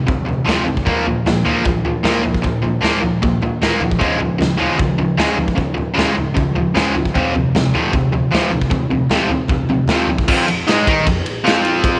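A straight 4/4 pulse sets a raw, menacing tone for this garage rock clip, cut from a longer piece. An up-front, cranked stack guitar carries the riff from the first second to the end. Its overdriven, bright, picked tone is double-tracked and moves through power chords before settling on a minor chord at 10.3 seconds, where a short new section begins. The raw garage drum kit sits up front alongside it, acoustic and punchy in the kick, with a medium-tuned snare, toms, crash and ride cymbals, and a dark, smooth quality with a rolled-off top despite the bright stone room around it. Light reverb and a small room ambience give the pair a close space.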